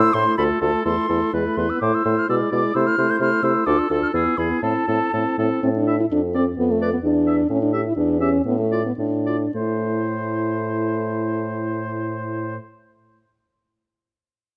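An airy concert flute carries the melody of this quick, classical-period movement for wind quintet, its soft attack, vibrato and rolled-off highs giving the opening an urgent, restless edge before it falls silent at 5.4 seconds. Beneath it, a distant, roomy oboe with light vibrato sings a second line, while a mellow clarinet sits in the background as accompaniment. A present French horn, warm and lightly vibrato, fills out the accompaniment, and a dark, up-front bassoon with a smooth top anchors the bass. In 2/4 with a rubato feel, the music slows from 7.0 to 9.6 seconds before settling into a new passage. Close, detailed microphones and light reverb capture this extract from a longer piece.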